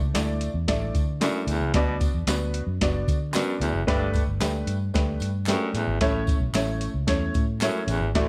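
A breathy, whispered baritone saxophone riff enters at 1.2 s in this joyful, danceable excerpt of uptempo 1960s-style soul at 112 BPM in A mixolydian, riding over a soft vintage rhythm box with deep kick, crisp snare and metallic hats, a dark, foam-muted fingered electric bass and a woody, slightly detuned upright piano, all three up front. Handclaps and tambourine sit in the background, and a mellow horn section with octave doubling adds a brief second line at 3.9 s, during a band accent that lasts until 6.0 s. Light studio reverb surrounds the band.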